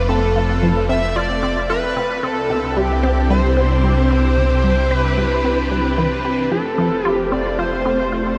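A shimmering pulse-width lead opens this luminous, cosmic excerpt of sequencer-driven space music, carrying the melody between G4 and E5 over a swirling, vintage string machine that holds sustained chords with ensemble chorus and phaser. Beneath them a round, deep analog bass sits up front in the low register, its detuned tone evolving as it sustains. At 0.1 seconds a juicy, squelchy blip pluck joins with a resonant filtered riff, its fast attack and short decay sharpened by phaser and delay. The lead's retro tone is thickened by chorus and trailed by delay, and the pulse moves at 112 BPM in a straight 4/4 in F lydian, with chords moving from F to Cadd9 at 2.2 seconds and back to F at 6.5 seconds. A huge ambient reverb with an 8.0-second tail soaks the dreamy mix, giving the whole fragment a floating, spacious glow.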